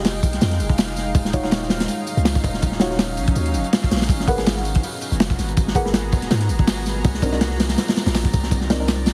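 A crunchy breakbeat kit drives this dark, atmospheric drum and bass excerpt at 163 BPM in 4/4, its sixteenths carrying a light swing, with a punchy kick, a medium-tuned snare and hi-hat sitting up front in a small, saturated room with a rolled-off top. Behind it, a dusty soul sampler-style kit adds compressed hi-hat, a fat snare and tambourine, thinned by high-pass filtering and tucked into the background. A long, deep 808-style bass holds the low end with sine-like tones that decay after a fast attack, roughened by tube saturation. Above, a granular cloud pad spreads blurred, evolving sustained chords with a slow attack and its own reverb, while a soft, nasal chord stab plucks through chorus and dub echo until 8.9 seconds. The harmony moves through Fm9, Ebm9, Abm9 and Cm9, and the whole mix carries a heavily compressed radio sound with vinyl crackle and light reverb.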